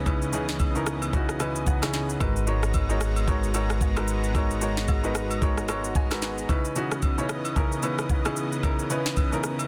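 A clear, worn grand piano, a lush, detuned unison pad with chorus and a punchy, funky analog bass open this hypnotic, deep amapiano excerpt, joined by an up-front electronic drum kit with a knocking kick and a sharp, softly clipped snare and by agogo bells and woodblock tucked in the background. The bass plucks beneath C#m9 and G#m9 chords until 6.5 seconds, while the piano adds fills at 1.1 and 5.4 seconds in a dense, heavily limited modern master.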